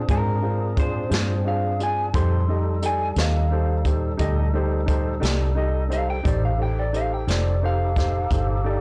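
Slow blues in a laid-back, soulful 12/8 at 58 BPM in F mixolydian, this excerpt from a longer piece moves from Bb9 to F9 at 2.1 s. A picked electric guitar through a small old amp carries the slightly broken-up, compressed melody over woody upright piano accompaniment, a dark, round, foam-muted fingered bass up front, and a fat tonewheel organ holding sustained chords in the background with key click and a slow rotary speaker. Jazz brushes on a distant, roomy kit with a boomy kick and a softly clipped snare round out the band, all under light reverb in a blown-out, overdriven recording.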